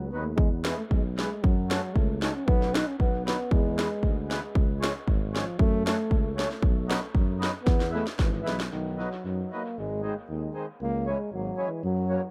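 This alpine folk fragment has the festive, bouncy lift of an alpine dance band, moving at 115 BPM in a straight 2/4 and starting in E major. A mellow euphonium carries the melody with light vibrato and a classical poise, soaked in dub echo. Beneath it, a tuba with a similarly gentle vibrato holds down the bass. A reedy, full accordion fills out the harmony with its own dub echo. An electronic, layered house drum kit sits up front with a punchy kick and cracking snare, playing a fill from 7.7 s before dropping out at 8.7 s, where the music shifts to B major. Light reverb and an echo-heavy mix give the whole a spacious, slightly dreamlike sheen.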